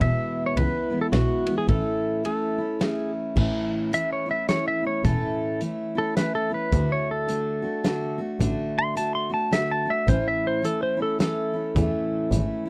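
A dry, close 1970s-style studio sound frames this heartfelt, nostalgic honky-tonk waltz in A major at 107 BPM with a swung 3/4 lilt, where a twangy, fingerpicked pedal steel guitar with slide and volume swells takes the melody and steps into a solo at 3.4 seconds over a full-bodied jumbo acoustic guitar, a distant bowed double bass with expressive vibrato and portamento, and a muffled, lo-fi vintage drum kit with a tight kick and rolled-off top, moving from E to A to D and back to A in this cut from a longer piece.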